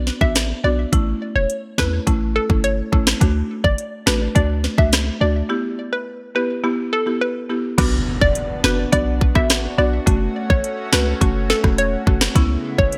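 Dancehall at 105 BPM in B minor, this sultry, hypnotic excerpt sets a deep, boomy 808-style bass and a tight, overdriven island pop drum kit with gated reverb and metallic hats under a hollow, detuned square pluck with chorus and delay and a buzzing, woody marimba that pumps against the sidechain, before a lush, warbling unison pad and a background impact arrive at 7.8 seconds after a break, all in a bright 1980s-style digital production with light reverb.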